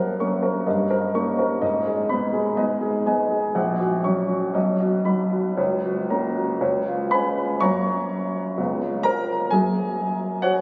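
Hopeful and lyrical, this brief romantic character piece for solo piano, cut from a longer work, unfolds in F# major at a flexible 57-66 BPM in 2/4 with rubato, its up-front baby grand sounding natural with short sustain across a range from A#1 to C#6, bathed in a wet church reverb with phone-captured room ambience and compression, as the harmony moves from F# through D#7/G, G#m and B toward C# before a new section from 7.6 s cadences back home via C#7 to F# by 9.5 s.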